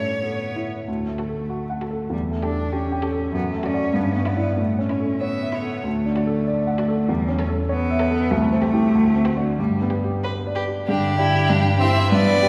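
A quick 2/4 pulse at 96 BPM, pushed and pulled with rubato, drives this lively, graceful classical-period movement for piano quartet in D major, turning to G major at 8.3 s. A rich, distant violin sings the bowed melody with vibrato above a focused cello line and a natural, up-front baby grand piano accompaniment, and a second, smooth-topped violin adds its own line from 1.2 s. The ensemble sits in a wet concert-hall reverb, in a short passage cut from a longer piece.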